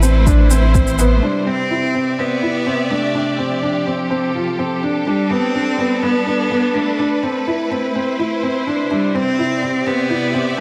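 This luminous, hopeful piano-and-strings electronica fragment opens with a felt-muted upright piano riff, soft, mellow and vintage in tone, placed up front with a low-pass filter and tape echo, over sustained chords from a clear, lush studio string section that pumps against the sidechain. Beneath them, a round sine sub bass holds a deep, warm note and pumps the same way, while an overdriven, filtered electronic shaker plays briefly alongside a deep, overdriven kick that sits in the background. The sub bass and shaker drop out by 1.2 seconds, when a rich, bowed solo cello enters up front with a vibrato-laden melody in its middle register. From there the piano, strings and cello carry a straight, steady groove through a progression moving from A minor through C, F and G before returning to A minor and C, the cut ending at 10.6 seconds. A moderate, lush hall reverb gives the mix an airy, spacious glow.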